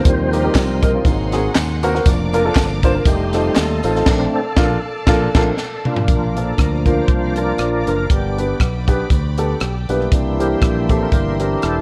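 A fast, jubilant and reverent uptempo gospel cut opens with everything but the drums sounding at once: a full, up-front tonewheel organ taking the solo through fast rotary speaker and chorus vibrato, backed by a dark, mellow baby grand piano, a punchy, bright fingered electric bass and a clear, bowed string section holding sustained chords up high. A crisp fusion drum kit, polished and airy with a high-tuned snare and tight kick, comes in almost immediately and sits at the front of the mix, driving a lightly swung 119 BPM groove in Bb major. Close, dry tambourine and group handclaps add a background lift until 3.9 seconds. The band hits a shared accent from 4.1 seconds, capped by a short drum fill before the second section at 6.1 seconds moves through Bb, G and C7 harmony as the organ keeps soloing. Light reverb and a worn, warbling cassette-tape quality with drifting pitch give the whole clip an aged, well-worn feel.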